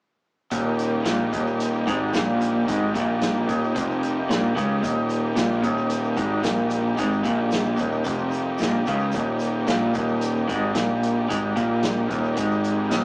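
At 0.5 s this hypnotic, kaleidoscopic psychedelic rock fragment at 111 BPM in Eb major opens with all its parts at once: a slightly broken-up, lo-fi guitar riff through a small old amp, shimmering with tremolo, together with a round, fuzzed-out picked bass, buzzy overdriven combo organ chords with heavy vibrato, a vintage drum kit with a punchy kick and rolled-off top in a pumping room, and a very quiet, grainy tube shaker. Guitar and bass sit up front, and all five parts play together until 13.0 s over a single Eb chord. The rough rehearsal-room sound carries tube saturation, a small-speaker character and a moderate small-room reverb.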